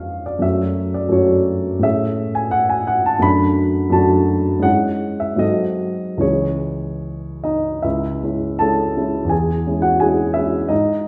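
In a rubato 2/4 pulse drifting between 71 and 88 BPM, this brooding, passionate romantic character piece in C# minor, cut from a longer work, features a dark, mellow, woody upright piano playing solo from C#2 to B5, its harmony moving through F#m, Amaj7 and D/F# to a G#7b9 that resolves onto C#m at 6.2 s before a new section begins at 7.8 s and settles on C#m/E, all heard from further back in a recital hall whose wet 1.4-second reverb surrounds the instrument.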